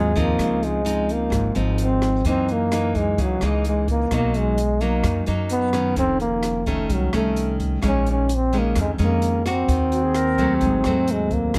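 A mellow, up-front trombone with light vibrato and scooped notes carries the melody from the first moment of this romantic, relaxed bossa nova excerpt at 129 BPM in Db major, over fingerpicked nylon-string guitar with audible finger squeak, growly pizzicato upright bass and, from 0.2 seconds, an open jazz drum kit of hi-hat, rim click and boomy kick, while an airy silver flute appears briefly in the background at the outset and again at 9.9 seconds, all captured close and dry as the chords move from Dbmaj9 through Gb6 and Cbmaj7 to a closing Ab7b9.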